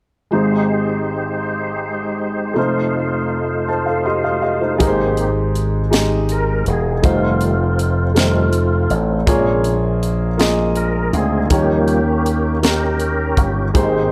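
Lightly reverberant and up-front, this reverent, hopeful slow gospel excerpt in 6/8 at 54 BPM opens with a dark, woody upright piano and a clear tonewheel organ with key click, chorus vibrato and fast rotary speaker over Abmaj7 and F7, the piano playing a fill before a punchy slap bass with an envelope filter and a crisp, airy fusion drum kit with a high-tuned snare enter at 4.8 seconds as the organ takes a solo through Bbm7 and Eb7 to the close.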